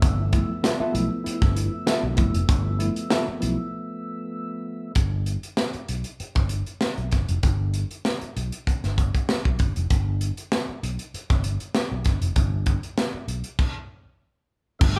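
A tight funk drum kit sits up front in a straight 4/4 groove at 97 BPM, its tight kick, medium-tuned snare, hi-hat and crash cymbal sounding acoustic in a small room, while an amped fretless electric bass growls low underneath for the whole clip. This strutting, funky cut from a longer piece in G mixolydian opens on a G13 chord with a mellow, round tonewheel organ holding sustained chords through a slow rotary speaker, key click audible. A reedy electric piano adds lightly overdriven stabs with fast tremolo, and a dark, clean hollow-body jazz guitar plays fingered, compressed accompaniment briefly in the opening bars. A break arrives at 3.7 seconds before the music settles onto a plain G chord, carried by the drums and bass, and a stop falls at 13.6 seconds, after which organ and electric piano return for the final moments. At 15.0 seconds a breathy, raspy tenor saxophone with light vibrato lands a single gritty G4, heard in a band playing live in one room with light reverb.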